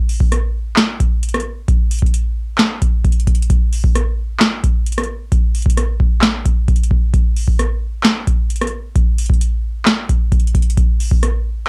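Eerie and menacing, this hip hop fragment rides a heavy half-time feel in 4/4, cut from a longer piece. A booming analog drum machine carries the whole thing, sounding from 0.1 to 11.3 seconds and sitting up front in the mix. Its deep kick anchors the groove beneath a crisp snare, handclaps, rim clicks and metallic hi-hats, and overdrive gives the kit a gritty, saturated edge. A short room ambience clings to the snare, clap and hats, as if the machine had been played back and re-recorded in a small space. The home cassette recording and light reverb lend the whole a murky, lo-fi character that deepens the unsettling atmosphere.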